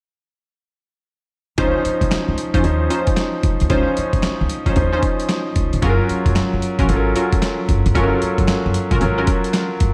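A swung sixteenth-note groove at 113 BPM in 4/4 drives this upbeat, flirty new jack swing excerpt in Db major, with a gritty, overdriven sampler-style drum kit up front: thumpy kick, medium-tuned snare, hi-hat and handclaps. A clear, intimate concert grand piano with audible action noise and long sustain plays over a woody pizzicato upright bass, while a detuned sawtooth-and-square polysynth with ring modulation, chorus and a filter pluck with a fast attack adds punchy stabs in the background until 9.3 s. The harmony moves from Dbmaj9 to Gbmaj7 at 5.8 s, set in a lush hall reverb within a dark, warm production.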